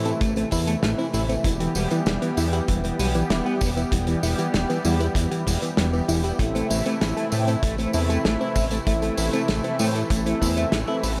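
A lush, detuned unison pad and a fat, saturated analog bass open this driving, nocturnal synthwave excerpt at 97 BPM in A minor, the pad holding sustained chords with chorus and a sidechain pump. Almost at once a soft, round pluck spins arpeggios through chorus, delay and a cassette-tape haze in the background, while a dark, clean semi-hollow electric guitar plays a fingered riff coloured by analog chorus and delay. A loose indie kit of hi-hat, medium-tuned snare and tambourine, plus a punchy kick, gives the straight 4/4 groove a pumping studio-room character with a rolled-off top. The harmony moves from A minor to E minor at 1.4 seconds and back to A minor at 6.4 seconds, where mellow, brassy synth stabs with an evolving filter sweep enter behind the mix. Light small-room reverb keeps the sound close and intimate.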